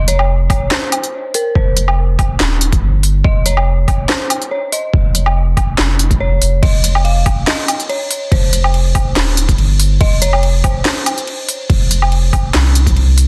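A half-time groove at 142 BPM in 4/4, lightly swung on the sixteenths, drives this heavy, dark deep dubstep fragment cut from a longer piece. A garage drum kit sits up front with a cracking snare, crisp hats, handclaps, woodblock and crash cymbal, its layered electronic sound carrying a tape-warm character and the air of a large room. An overdriven electronic kick, pitched down and muffled, lands with a compressed thump from 0.5 seconds and drops out near the close. Underneath, a soft dub sub bass moves between Eb1 and C2, deep, round and sustained, with a mellow tone blending triangle and square waves. Above it, a dark detuned synth bell rings out from an opening F5, its eerie, inharmonic FM tone decaying through chorus and dub echo, and the whole sits in a digital ambience with a dense, heavily limited modern master.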